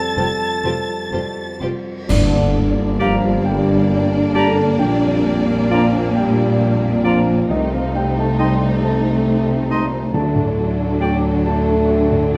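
In a rubato 6/8 lilt, this bittersweet, sorrowful cinematic excerpt sets a lush violin melody over a felt-muted upright piano, a mellow clarinet, an airy flute group, background French horn chords, darker second violins, rich violas, cellos with portamento and double basses, until clash cymbals, concert bass drum and hard-mallet timpani strike an accent at 2.1 s, a present, bright oboe joins at 3.0 s and the timpani return at 10.1 s, all close and detailed in a moderate recital-hall reverb.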